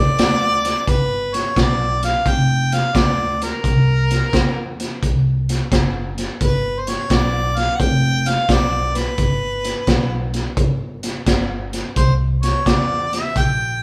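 Electric blues shuffle at 86 BPM in G mixolydian, soulful and swaggering, with a swung feel: an overdriven harmonica with vibrato and a soft attack plays a jazz-style solo over G7, C7 and G changes, a woody, thumpy pizzicato upright bass sits beneath it, and a crunchy, gritty breakbeat kit with a tight kick, high-tuned snare and rolled-off top sits up front, all captured as a band playing live in one large studio room with moderate reverb in this section cut from a longer piece.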